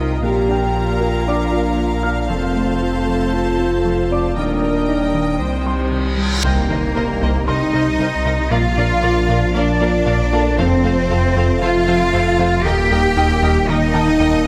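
Cinematic hybrid orchestral and electronic film score, futuristic and vast and cut from a longer piece, in which a focused violin line, smooth violas, intense cellos, a thick saturated sub bass, a mellow chorused analog pad, very quiet tine-like synth pluck arpeggios and a worn concert grand piano with delay sit in a moderate scoring-stage reverb beneath distant, dark French horn chords that end at 6.2 s, as an electronic reverse cymbal and impact herald the arrival at 6.4 s of a faint, lush violin melody, tight, bright trombone chords, a round analog bass riff and expressive double basses in the background.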